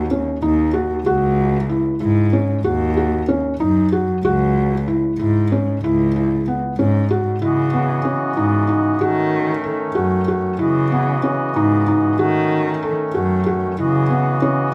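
Pensive and restless, this contemporary instrumental piece moves in a straight 5/8 at 189 BPM in eighths, set in C# minor, with harmony drifting from D#m7 and C#madd11 toward C#m11 and F#m6. A felt-muted upright piano spins soft, intimate arpeggios with audible action noise and a vintage, thick-felt mellowness, while a close, bowed cello carries the dark bass line with expressive vibrato and portamento. At 7.4 s a hand-pumped harmonium joins with reedy, nasal sustained chords that seem to breathe, all set in light reverb.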